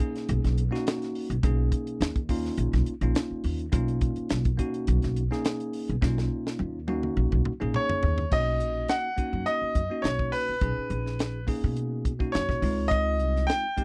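A bell-like tine electric piano and a funk drum kit with a high-tuned snare open this funky, soaring electric jazz fusion fragment at 104 BPM in B lydian; a woody, thumpy pizzicato upright bass on gut strings joins at 0.3 seconds, and after a drum fill from 6.0 seconds a brilliant grand piano with audible action noise and slapback echo takes the melody at 7.8 seconds over Bmaj9 moving to C#maj9, captured in a close, dry 1970s-style studio sound.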